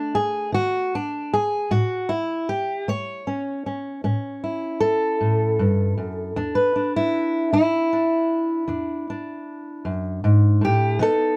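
Lightly reverberant and dark in production, this rollicking, swaggering acoustic country blues excerpt in 12/8 features a solo fingerpicked steel-string acoustic guitar with a woody, old-strings tone, placed up front and moving from B7 through A7 to E7 across its 11.4 seconds.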